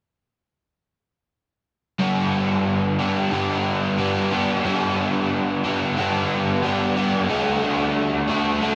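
Rock at 91 BPM in G major, tuned slightly flat, this hazy, dreamy fragment features a lone crunchy overdriven electric guitar, bright, picked and double-tracked with a subtle chorus, playing solo up front from 2.0 to 8.8 seconds. The harmony rests on G before moving to D at 7.3 seconds, while a huge ambient reverb with a long tail soaks the mix in a drifting, washed-out haze.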